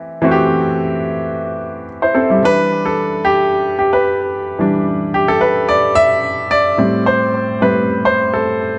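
A clear, polished baby grand piano sits up front from the start and carries this driving, glamorous disco passage in E minor at 109 BPM, its Am7 to Em7 to Am7 changes colored by analog delay and light reverb, with the piano taking a solo turn from 2.4 seconds until the cut ends at 8.8 seconds.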